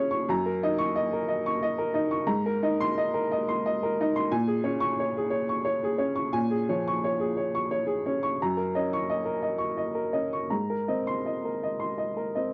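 Melancholic and intimate, this neoclassical minimalist piano piece is a short passage cut from a longer work. A single upright piano plays alone for the full 12.5 seconds, moving in a rubato 3/4 that lets the pulse breathe and bend. Its tone is warm, woody and slightly boxy, with a short sustain that keeps each chord distinct, and it sits up front in a dry, close 1970s-style studio sound touched by light reverb. The harmony circles through Gb6, Abadd9 and Bbm7 before returning to Gb6 at 8.4 seconds and Abadd9 at 10.5 seconds, while the part spans from Gb2 up to Db6. The instrument is tuned slightly low, to A4 = 438 Hz.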